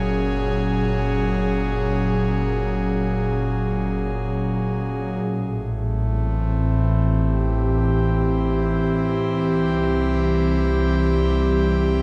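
An airy, breathy pad with chorus sits up front over a deep, round sub bass and a barely audible, metallic ringing vibraphone that drifts in arpeggios until 5.7 s, opening this luminous, warm ambient excerpt in free time, its sustained chords moving from Gbadd9 to Am7 at 5.2 s and on to C, all washed in a moderate plate reverb within an echo-heavy mix captured on cassette tape.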